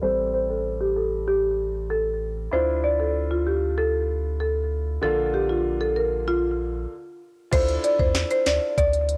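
Recorded at home on cassette in a digital ambience, this sultry, bouncy dancehall excerpt in D minor at 96 BPM rides a filter sweep through its first 7.5 seconds, as a woody, close-miked marimba carries the melody through a low-pass filter, tape and analog delay. Beneath it, a clear concert grand piano with short sustain pumps under sidechain and its own low-pass filter, while a round sine sub bass with tube saturation holds the low end over Am7, Dmadd9 and Bb. After a stop at 6.9 seconds, an electronic afro-pop kit enters at 7.5 seconds, its knocking kick, sharp snare and smooth hats up front.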